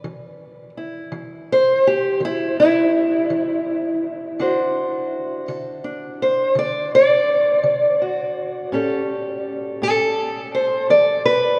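A fingerpicked steel-string acoustic guitar opens this 11.6-second clip from a longer acoustic country blues piece, playing entirely alone. The mood is soulful and swaggering, moving at a slow 55 BPM in a straight 12/8. The guitar has a dark, boxy parlour character and sits up front, ranging from A2 up to D5. Its chords move from E5 to D7 at 4.4 seconds and A7 at 8.7 seconds, then return to E5. A drenched cathedral reverb with a 6.5-second tail surrounds the playing, suggesting a church or concert hall, and the top end is capped at 10.5 kHz.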